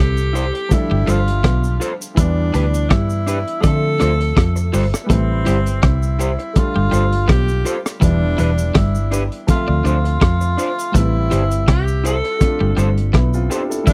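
A dry, close 1970s-style studio sound frames this short, longing lovers rock reggae cut from a longer piece, with a lightly swung 16th-note feel over a cycle of Am7, G9sus4, Em7 and Dm7. A distant, roomy tenor saxophone carries the smooth melody with vibrato and tape echo, while a baby grand piano with short sustain and slapback echo accompanies. Bright, twangy twelve-string electric guitar picks a riff in the background, a slightly broken-up guitar through a small old amp adds dark stabs, a round foam-muted bass sits up front, a cabasa enters at 0.2 seconds, and a crunchy, saturated breakbeat kit of hi-hat, tight kick and rim click joins at 0.4 seconds.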